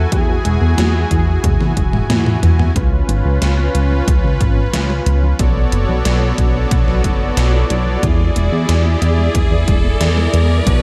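This nostalgic, driving synthwave excerpt opens with a thick, bright unison lead carrying a brief melody through ensemble chorus and analog delay, over a smooth, evolving soft supersaw pad, very quiet detuned pluck arpeggios and a glossy, mellow chorused synth bass up front, with the pad and bass pumping to the sidechain. From 0.1 seconds, a punchy, overdriven electronic kick and a sampler-style 80s drum machine of hi-hat, snare and toms, soaked in gated reverb and re-recorded in a large room, drive the track. The lead drops out at 2.1 seconds during a drum fill, and the drums carry on through the chord changes. From 6.5 seconds, a riser builds in the background within a light digital ambience.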